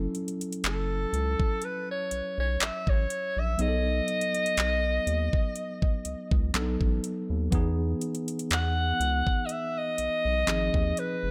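An alto saxophone with light vibrato and scooped notes carries a moody, longing contemporary R&B melody through digital delay, entering at 0.7 seconds over a worn, slightly out-of-tune tine electric piano, a round, deep analog bass, and an electronic drum kit of knocking kick, metallic hi-hat and handclaps, all at a slow 61 BPM with a light sixteenth-note swing in F# dorian, moving from F#m7 through B7 and Emaj7 to G#6 in this brief cut from a longer piece.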